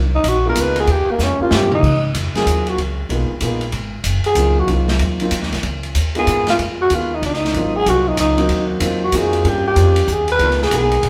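A woody pizzicato upright bass opens this swinging, warm small-group jazz passage in a brisk 3/4 at 189 BPM. At 0.2 seconds a growling, raspy tenor saxophone takes the solo up front with breathy subtone, vibrato and scooped notes, alongside an airy drum kit with dark cymbals and a boomy kick that plays a fill from 1.2 to 1.8 seconds. A warm grand piano supplies accompaniment over Ab mixolydian harmony built largely on thirteenth chords, and the band, playing live in one room, sits in a wet large-studio reverb.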